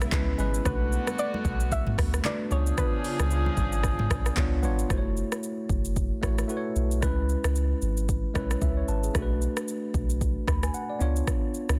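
A swung sixteenth-note groove at 113 BPM in 4/4 drives this hypnotic, sultry afrobeats passage in B dorian, built on an up-front electronic drum kit with a deep kick, metallic hats, handclaps, rim clicks, shaker and toms, a punchy sine sub bass with a pitch-drop attack, and a clean tine electric piano through a combo amp that carries the chords throughout and adds a fill at 8.1 seconds. In the opening stretch, a soft, round pluck melody colored by chorus and delay floats above a distant, roomy horn section with light vibrato, a very quiet breathy pad, and ringing, close-miked congas in the background, all of which fall away by about 4.9 seconds as the harmony moves to F#m7. The dense, heavily limited mix is dry and modern, cycling through C#m7, Bm7 and C#7b9 in this cut from a longer piece.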